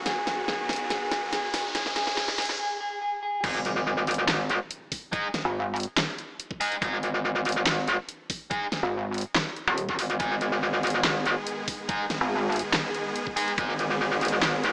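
A half-time 4/4 groove drives this aggressive, heavy wobble dubstep passage, cut from a longer piece. It opens on a build-up: a dark, clean, fingered electric guitar melody sits up front with digital delay, while detuned sawtooth supersaw chords pump against the sidechain, and a riser and impact hover in the background. The overdriven dubstep drum kit plays a fill, with a huge snare, bright hats, crash and handclaps, over a move from B to C#m before a short break. The drop lands at 3.4 s with an up-front metallic FM wobble bass, distorted and chorused, alongside a knocking electronic kick and double-tracked, picked distorted guitar stabs roughened by 12-bit sampler grit and delay. A saturated, pulsing pluck wobble bass punctuates briefly from 5.5 s, and the lush supersaw chords return at 10.2 s. A lush hall reverb and a high-pass, small-speaker tone colour the whole mix.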